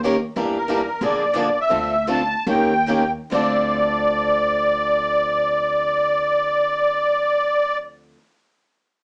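A short cut from a longer jazz manouche tune opens with two picked acoustic guitars and a plucked upright bass together, the swing-style guitar sitting a little forward while the boxy archtop stays in the background. At 0.6 seconds the musette accordion enters up front with a reedy, shimmering melody, its vintage, band-limited tone giving the piece a bittersweet, virtuosic character. The music is in D minor and 4/4 with a swung eighth-note feel, its tempo ranging between 130 and 186 BPM and slowing from 0.4 to 3.3 seconds as the harmony moves through Em7b5, Bb7, Dm9 and Eb7 before settling on Dm7. The woody, steel-strung bass holds the low end in pizzicato while both guitars supply picked accompaniment, and the form passes from its opening passage into a second section at 3.3 seconds. The whole band sounds as if playing live in one small, reverberant room, heard through a small speaker.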